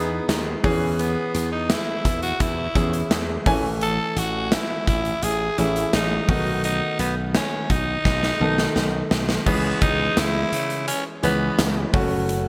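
1980s-style pop in C# minor at 85 BPM, moody and urgent, where a raspy, breathy tenor saxophone with light vibrato and delay carries the melody up front over warm, polished grand piano accompaniment and glassy, punchy slap bass, while a big rock drum kit with gated reverb, bright cymbals, tambourine and a punchy kick enters at 0.3 seconds and plays a fill from 8.1 to 9.5 seconds before the harmony shifts to C#m7, all set in a bright digital production with plate reverb in a fragment cut from a longer piece.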